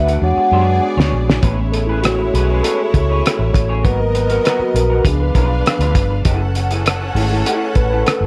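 Light reverb and small-room ambience frame this smooth, lush 1970s-style soul fragment, where a soft-mallet vibraphone with slow motor vibrato rings out a brief melody that stops at 0.8 seconds while a muffled, cloth-damped drum kit with a fat snare plays a fill. A round, foam-muted fingered bass sits up front beside a mellow tine electric piano, which takes a clean solo from 1.4 seconds over rich chords such as Amaj9, G#m9 and C#7b9. A distant, bowed studio string section adds a focused second line, and a slightly broken-up electric guitar through a small old amp picks a compressed riff bathed in lush chorus.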